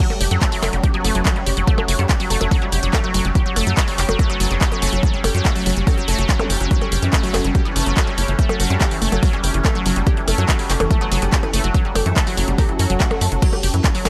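A heavy, layered electronic kick and a techno kit of crash, handclaps, hi-hat and percussion blips open this hypnotic, alien stretch of psychedelic trance, joined at once by a lush, detuned unison pluck riff with digital delay and sidechain pumping, and a morphing, warbling wavetable pad holding sustained chords in the background through phaser and its own reverb. From 0.2 seconds a tight, punchy sawtooth sequencer bass drives up front beside the kick, and from 0.9 seconds a very quiet metallic FM wobble bass adds a saturated, chorused second line. Background zaps and a swell at 12.7 seconds punctuate the dry mix, which carries lossy compression artefacts and is cut from a longer piece.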